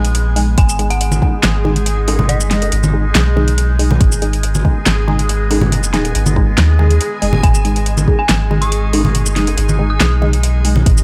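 Deep dubstep in a heavy, brooding half-time, built on a round, mellow sub bass up front and a tape-warm electronic kick, with a deep house kit of fat snare, handclaps, shaker and metallic hats, distant hard-hand congas and bongos, muted phased chord stabs with dub echo, a resonant drone of moving overtones, a dreamy reversed texture in the background, and an eerie inharmonic bell melody that appears at 0.6 seconds and returns at 7.4 seconds.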